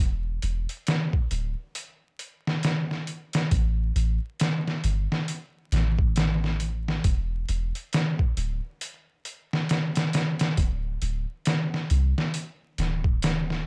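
Trip hop at 68 BPM with a 16th-note swing, melancholic and brooding, cut from a longer piece. A soft 808-style bass sits deep, round and dark up front from the opening, its sine tone striking fast and decaying in the low register. At 0.4 seconds a compressed, pitched-down sampler-style kit joins with a thumpy kick, medium-tuned snare and hi-hat, tape-warm and gritty, all in a dry hardware recording dusted with vinyl crackle.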